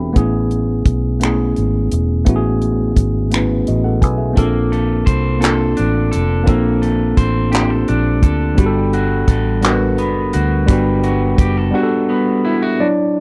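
A dry, close recording in a small room, with a 1970s studio character, frames this short cut from a slow, intimate six-eight R&B piece. A worn, slightly out-of-tune tine electric piano opens with a fill and carries mellow major-ninth chords up front, beside a dark, round, foam-muted fingered bass and a damped acoustic kit of tight kick, hi-hat, finger snaps and handclaps. From 4.4 seconds an electric guitar at the edge of break-up adds a twangy, picked second line, set lower in the mix.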